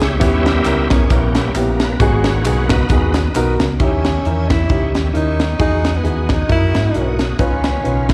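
Heard as a live gig through the venue's PA with a recital hall's reverb, this fervent, soulful uptempo gospel cut from a longer piece swings at 134 BPM in 4/4. A shouting, lightly overdriven tonewheel organ with key click, chorus vibrato and slow rotary speaker takes the lead until 3.8 seconds, over an intimate grand piano with audible action noise and slapback echo, a dark, round, punchy fingered electric bass, and a tight, up-front funk kit with a high-tuned snare, while tambourine and group handclaps sit in the background until 3.7 seconds. From 3.8 seconds a breathy, whispered, close-miked tenor saxophone carries the melody with vibrato and slapback echo, as the chords move from D#7b9b13 and G#m7 through Emaj9 to C#9.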